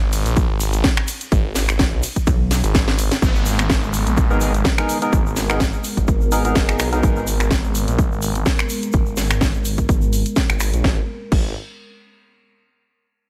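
A thick, swirling detuned saw bass sits up front from the opening second, its phaser and sidechain pumping giving this gritty, swaggering bass house cut its drive at 126 BPM in G# minor, with a 16th-note swing. A punchy, overdriven electronic kick anchors the groove alongside a house kit of cracking snare, hi-hat, ride, crash and finger snaps, while a grainy tube shaker ticks in the background. The opening drop closes with a drum fill, and at 2.3 seconds a heavy, pulsing pluck wobble bass lands briefly on B1. From 3.2 seconds the harmony moves from G#m to G#madd9 as a filter sweep works over the saw bass and a background downlifter descends, and shortly after a deep, moody analog pad enters on sustained chords. A hollow, organ-like stab with lush chorus and delay punctuates the middle stretch, and the whole mix stays dry and close, with little reverb.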